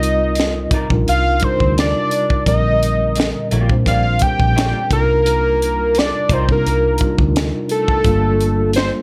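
A fat, detuned sawtooth lead with vibrato and a filter sweep sings up front over a mellow tine electric piano, a dark, round, foam-muted fingered bass and a tight funk kit with a high-tuned snare, opening this smooth, late-night R&B and neo-soul excerpt at 86 BPM in C dorian with a swung 16th feel, while a slightly broken-up, lo-fi electric guitar with subtle chorus joins at 0.7 seconds as a quiet second line over Cm11, Bb6 and Gm9 chords in a light reverb.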